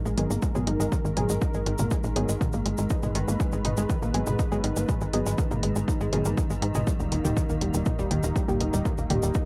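Heard through the light reverb and tape grain of a home cassette recording, this short cut from a longer melodic techno piece moves at 121 BPM in 4/4 with a straight, hypnotic and driving feel in G# minor. Up front, a punchy, layered electronic kick, re-recorded in a small room, enters at 0.4 seconds and sits alongside a tight, nasal sequencer bass whose sawtooth-and-square filter plucks decay quickly and keep evolving under tube saturation. Further back, an analog drum machine adds tape-softened hi-hat and toms, while a grainy acoustic cabasa brings small-room texture. A round, warbling analog pluck spins detuned arpeggios through chorus and tape echo, and a muted, deep dub chord stab with a short decay adds mellow accents, also echoed on tape. Beneath them, a smooth detuned pad holds sustained chords with a soft attack and long release, and a swarming, tense, wave-folded drone with granular grit and its own reverb hums low. 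Pad, drone, pluck, stabs and bass all pump with sidechain, as the harmony rests on G#m7 before shifting to D# at 6.9 seconds.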